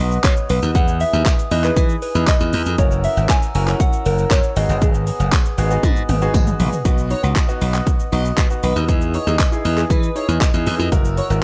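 A dry, rough home-demo sound frames this bittersweet yet confident dance-pop excerpt at 118 BPM, where a punchy electronic drum kit with metallic hats and a bright, up-front glassy slap bass drive a pumping bed of brilliant concert grand piano and ethereal glass harmonica chords, while a soft FM synth bell carries the opening melody, a jingly tambourine sits in the background, a drum fill arrives at 5.8 seconds, and from 6.9 seconds a very quiet woody synth pluck arpeggiates, joined at 7.1 seconds by an airy, dreamy lead with vibrato and tape echo over chords moving from B through Emaj7 and F#7.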